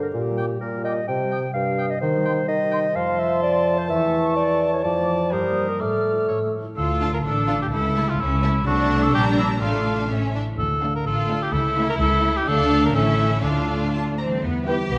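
A cor anglais with light vibrato sings up front through nearly the whole cue, joined at first by a dark, soft-attack clarinet and bassoon, a distant, airy flute ensemble and a ringing, thumb-plucked concert harp whose arpeggios run from start to finish. This playful, whimsical film cue in D minor moves at 126 BPM in a straight 2/4 with a quirky, magical mood. At 6.5 seconds the clarinet, bassoon and flutes fall away, and from 6.8 seconds lush bowed strings take over, with two violin lines (one a background melody), smooth violas, a distant cello section and a close double bass section, while a roomy French horn section sounds briefly in the background at 14.7 seconds. Wet scoring-stage reverb lends the dark production a spacious, cinematic glow.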